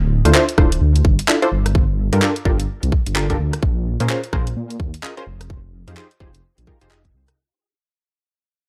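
Swung sixteenths give this soulful, skippy two-step UK garage fragment its bounce, as a tight, up-front electronic kick and a garage kit of handclaps, bright hi-hats and rim clicks in a small room play alongside a deep, rumbling detuned saw bass with tube saturation and punchy, warbling vintage chord stabs through chorus and analog delay, moving from Dm9 through Gm9 and Bbm9 to Fm9 in a dry, gritty hardware recording that fades out over its 7.4 seconds.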